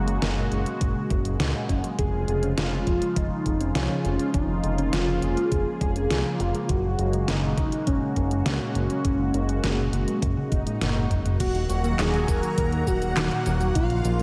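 A straight 4/4 synthwave groove at 102 BPM drives this nostalgic, dreamy excerpt, where an overdriven, knocking electronic kick and an overdriven pop kit with a deep snare, hi-hat, handclaps, cabasa, crash and toms sit under a fat, nasal, saturated bass and a swirling, detuned pad that both pump against the sidechain, while a very quiet, tine-like FM pluck spins arpeggios and a thick, bold unison lead with vibrato and analog delay carries the melody from 2.0 seconds, before a drum fill at 10.2 seconds and a background electronic swell at 10.4 seconds usher in shimmering, vintage string-machine violins at 11.4 seconds over an Ebm chord, all bathed in a lush hall reverb.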